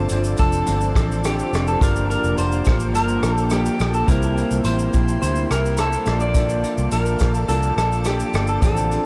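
A slightly broken-up electric guitar through a small old amp opens with the melody, touched by subtle chorus and tape echo, over a dark, lo-fi second guitar with lush chorus and vibrato, a gritty, barky overdriven tine electric piano with fast tremolo, an ethereal, detuned pad and a round, foam-muted fingered electric bass, while a distant, roomy unplugged drum kit of punchy kick, hi-hat, rim click and shaker joins at 0.1 seconds in this lonely, mellow indie and bedroom pop excerpt at 106 BPM, its chords moving from Dm7 through Gm7 and C7 to Bbmaj7 in a dreamy mix soaked in huge ambient reverb.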